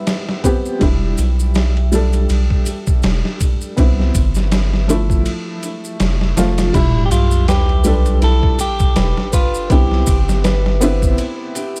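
A dark upright piano with tremolo and tape echo opens this brooding trip hop excerpt at 81 BPM in E phrygian, alongside a very quiet, flickering granular texture, a gritty, pitched-down sampler-style drum kit with a thumpy kick up front, and saturated maracas and group handclaps, with a deep, round dub sub bass entering at 0.8 seconds. At 6.7 seconds the texture drops away as a sub drop impact lands in the background, a clean, picked electric guitar takes the melody through tape echo, and a small, fingerpicked nylon-string guitar plays arpeggios coloured by delay and vintage 12-bit sampler grit. The swung sixteenths and the moody shifts between Em7, Cmaj7 and Fmaj7 keep the mood heavy, all set in a digital ambience.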